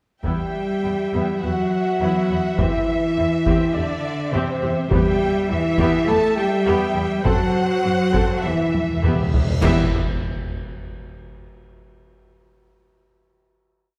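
A straight 4/4 pulse at 102 BPM is driven by a close taiko ensemble struck with hard sticks in a big ostinato, joined by the driving ostinatos of the violas and a rich double bass section in this heroic, dark E minor orchestral film cue. Lush bowed violins with vibrato carry the theme, one line doubling the tune at the octave alongside a clear, distant cello section, while mellow French horns sustain chords over a movement through Em, C/E and F#dim. Articulate hard-mallet timpani enter at 4.9 s, cymbal crashes and concert bass drum strokes arrive at 7.2 s, and a huge reverse cymbal with low impacts sweeps into a final chord at 9.6 s, all set in a moderate scoring-stage reverb.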